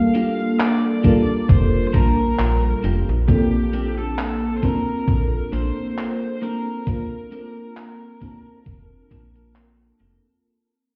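A lush, detuned FM electric piano with a soft pad layer opens beside a high-gain, distorted lead guitar melody in this dreamy, faded 67 BPM vaporwave piece in Bb major, joined by a bright, compressed clean guitar riff in the background and a gated 80s drum machine of cabasa, handclaps and hi-hat with 12-bit grit, then an overdriven, thumpy kick at 1.0 s and a snappy, metallic slap-like FM bass at 1.5 s, the whole mix muffled as if through a wall with stone room reverb and cassette tape haze as it moves from Gm7 to Bbmaj9 under a fade-out beginning at 0.9 s.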